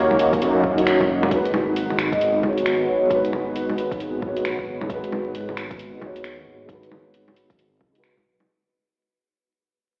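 Heard through vinyl crackle and an AM-radio haze, as if played on a big sound system in a bare stone room awash in huge ambient reverb, this rainy, nocturnal future garage excerpt swings its 16ths over a D#m7 to G#m7 change, with a thick-felted upright piano full of audible action noise, low-pass filtered and trailed by analog delay, a moody chorused analog pad and a menacing detuned saw bass all pumping to the sidechain, while a tape-warm deep house kit of bongos, finger snaps and hi-hat and a deep electronic kick sit beneath; a metallic soft-mallet vibraphone with 12-bit sampler grit and analog delay rings out between 2.1 and 3.1 s, and from 1.3 s filter sweeps move across the bass and piano as the whole recording fades out.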